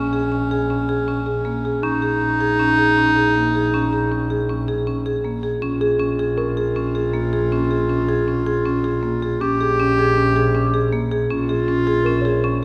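Hypnotic and pensive, this contemporary chamber piece moves in an uneven five-beat metre, with a dark, classical-style clarinet singing a second line over woody rosewood marimba arpeggios and a focused, bowed double bass with vibrato, all three up front on a single minor-seventh chord. At 5.8 s a bell-like, delicate celesta with soft felt hammers joins in the background. A moderate scoring-stage reverb gives the ensemble a sense of space in this passage cut from a longer work.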